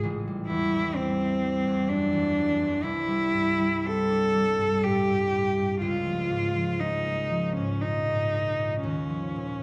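A rich, focused bowed cello with vibrato and a smooth top carries the melody from C4 to A4 over ringing, fingerpicked concert harp accompaniment spanning A1 to E4, a mysterious, hazy impressionist classical duo drifting in rubato 3/4 at 57-64 BPM through Am7, Cadd9, Db69 and Eb7sus2, both instruments up front in a moderate concert hall reverb.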